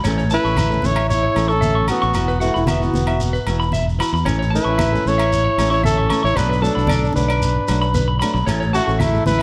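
A straight 4/4 pulse at 114 BPM drives this carefree, sunny highlife guitar band excerpt in A major, with the chords moving from A to Esus2, back to A, then Bm7 before settling on A again. Up front, a growly fingered electric bass anchors the low end, while congas with a thin, low-tuned skin played with soft hands sit in the background alongside ringing agogo bells and a grainy shekere that sounds distant, as if in a large room. A twangy clean electric guitar spins compressed, picked arpeggios high in its range, and a dark flamenco guitar adds fingerpicked accompaniment further back. From 0.3 s a mellow trumpet with jazz-style vibrato carries the melody up front, joined by a breathy, whispered alto saxophone on an intimate second line. Slapback echo colours the trumpet and electric guitar, and a moderate spring reverb with a small room sound gives the band a sense of space.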